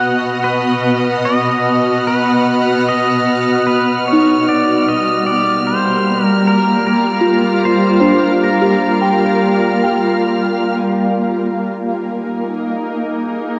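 At a straight 75 BPM in 4/4, this luminous ambient excerpt sets an up-front shimmering pad of detuned, granular sustained chords beside a twangy pedal steel melody that runs until 10.4 s, a soft FM bell that arpeggiates with phaser and tape echo from 4.1 s, and a lush bowed violin section behind, all soaked in cassette tape color and a hall reverb as it moves from B to Gm7 and then Absus2.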